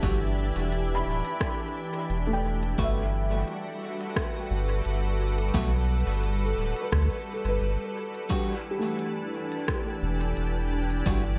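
Light reverb and a digital ambience surround this deep, hazy ambient dub passage in E minor, cut from a longer piece, moving at 87 BPM with a gentle 16th-note swing over a single Em9 chord for about 11.4 seconds. Up front, a bright, warbling organ-like pad holds sustained chords through ensemble chorus beside a round sine sub bass, while a dark, felt-muted upright piano with audible action noise plays arpeggios through tape echo. Further back, a slightly broken-up electric guitar picks stabs into dub echo, and an overdriven, punchy layered kick joins an electronic kit of crisp hi-hats and rim clicks, re-recorded in a large room and sent through dub echo.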